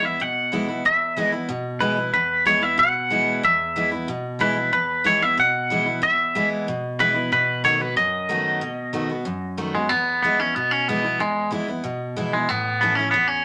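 Rock with a retro, rollicking mood, moving briskly at 185 BPM in a straight 4/4 in E major, its chords travelling from E to B7 and back to E before touching A near the end of this 13.4-second cut. A clean, compressed, twangy electric guitar carries the melody up front, while a picked steel-string dreadnought acoustic guitar supplies bright, full-bodied accompaniment with fresh strings and audible finger squeak. Both guitars play throughout, with the music shifting into a new section at 9.9 seconds, all set in a moderate club reverb.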